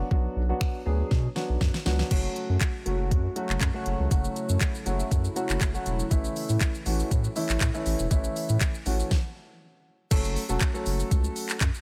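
Dance-pop at 120 BPM in F# minor, confident and bittersweet, built on a dark, mellow baby grand piano and a deep, saturated sine sub bass that both pump against the sidechain. An electronic R&B drum kit sits up front with a soft kick, fat snare, smooth hats, snaps, claps and shaker, and it rolls through a fill before a shimmering, retro pulse-width pad with chorus and detuned sawtooth colour fades in behind at 2.1 seconds. The pad drops away at 9.1 seconds as the groove stops briefly, then the beat returns on F# minor at 10.1 seconds in a digital ambience.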